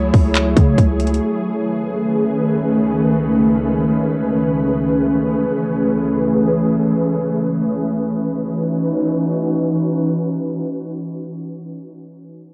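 This short cut from a longer atmospheric cloud-rap track floats in free time in C# minor, its trap drum kit of hard-clipped kick, metallic hi-hats and handclaps sitting up front with a cassette-tape grit before dropping out at 1.2 s. A deep, boomy 808-style bass with a fast attack and a noise layer decays beneath the drums over that same opening stretch, then the music breaks from 1.2 to 2.1 s. Holding the whole piece together is an ethereal, airy pad of detuned, wave-folded sawtooth and triangle tones in unison, thickened by ensemble chorus and built-in reverb and shaped by a low-pass filter sweep through the first 8.1 s. Its slow-attack, long-release chords drift from F#m9 over C# through B13 and Amaj9 before settling on C#m11 at 8.1 s, where the second section begins and the pad sustains alone until the end. The mood is hazy and spacious, with a mellow, full-bodied glow and the light digital ambience of a home cassette recording.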